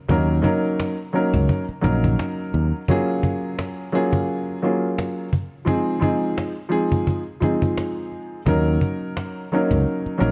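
A dark, reflective boom-bap hip-hop excerpt opens with a woody upright piano, a round fingered electric bass and a snappy cajon entering together, set over a loose, swung groove. The piano carries the accompaniment in a mellow, intimate tone with audible action noise and short sustain, its sound softened by cassette tape character and filtering that trims both ends of its range. The bass is punchy and direct, sitting up front before dropping out at 2.7 seconds and returning at 8.5 seconds as the harmony comes back to Ebm7. The cajon is played with hard hands, its close, acoustic sound carrying a snare rattle throughout. Light reverb and small room ambience surround the parts, and a bed of vinyl crackle adds texture as the chords move from Ebm7 through Gbmaj9 and Fm7.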